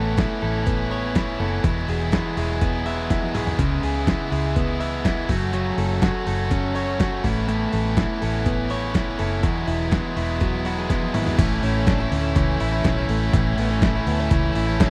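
This breezy, nostalgic stretch of jangly indie pop, cut from a longer piece, opens with a clean, direct-recorded electric guitar playing bright, scooped arpeggios with a warbly pitch drift and slapback echo, set beside a biting overdriven guitar carrying the accompaniment. Underneath, a vintage fingered electric bass sits dark, round and foam-muted, with an amped tone. At 0.2 s a dusty, sampler-style soul drum kit comes in, gritty and compressed with overdrive, built on a thumpy kick, a medium-tuned snare, hi-hat, crash and toms, and it drops in a fill at 3.1 s and another just before the change. The harmony moves through Aadd9, Eadd9, C#m7 and F#m before opening onto a plain A chord at 11.4 s as a new section begins. The sound is a dry, close 1970s-style studio recording dusted with vinyl crackle and digital ambience.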